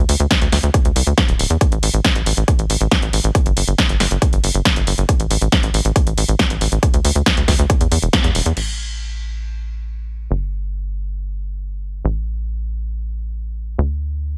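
Set in a digital ambience, this emotional, bittersweet uplifting trance excerpt pairs an overdriven, layered electronic kick with a dry analog drum machine of crash, hi-hat and punchy snare, its hats and cymbals pumping with sidechain, under an up-front sawtooth-and-square sequencer bass with a tight filter pluck, fast attack and decaying tail that also pumps. A band accent lands at 8.1 seconds, the drums drop out by 8.7 seconds, and the bass carries on alone to 14.4 seconds.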